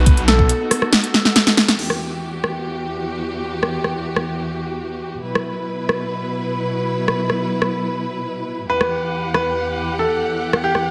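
A snarling, growling distorted saw bass tears through the opening drop of this chaotic, aggressive heavy wobble dubstep excerpt at 139 BPM in a half-time feel, joined briefly by a knocking electronic kick, while a punchy big-room drum kit with metallic hats carries the beat, a smooth bowed string section holds sidechain-pumped, low-pass-filtered chords in E harmonic minor, and a brilliant grand piano with delay plays the melody at the start and again from 8.7 seconds, inside a lush hall reverb.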